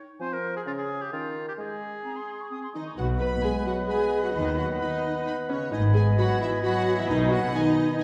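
A lilting three-beat pulse with a straight feel carries this playful, whimsical film cue, a brief cut from a longer piece with a magical air. From 0.2 s the woodwinds open together: an airy, bright concert flute, a punchy oboe and a mellow clarinet set back in the mix play their lines over a dark bassoon accompaniment. At 2.7 s the texture blooms as a viola section, bowed with vibrato and expressive portamento, joins a distant, roomy French horn section holding soft sustained chords, and a lush violin section in the background adds another line just after. From 3.0 s, as the harmony settles onto B, a smooth cello section and a focused double bass section ground the bass, and at 3.4 s a focused violin section takes up the melody. The ensemble sits in a reverberant scoring stage, heard from further back in the room.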